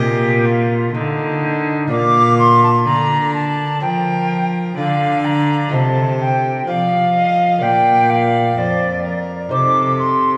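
Classical baroque-style sonata movement with continuo in Bb major at 63 BPM, dance-like and radiant, where a silver concert flute with pure, crisp-attacked vibrato sits up front on the second line alongside a gut-strung, period-style violin melody, a delicate, very quiet fingerpicked lute with double strings, and a reedy, bowed cello bass, all bathed in the wet 2.6-second reverb of a church or concert hall in this short excerpt cut from a longer piece.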